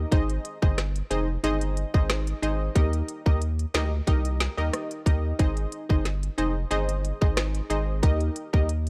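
An island pop drum kit sits up front in this summery, bouncy dancehall excerpt, its tight kick, woody snare, rim click and smooth hi-hats carrying an electronic, tape-warm sheen from 0.1 seconds onward. Beneath it, a deep, thick sine-based sub bass with a fast attack and saturated edge holds long, sustained notes in the low register, also sitting close in the mix. A punchy chord stab built from detuned sawtooth and square waves with a sub octave adds plucky, decaying hits coloured by chorus, stopping at 8.7 seconds. The harmony simply alternates between Ab and Eb at a relaxed 91 BPM in a straight 4/4. A digital ambience surrounds the parts, and the overall sound is dry and gritty, as if captured through hardware.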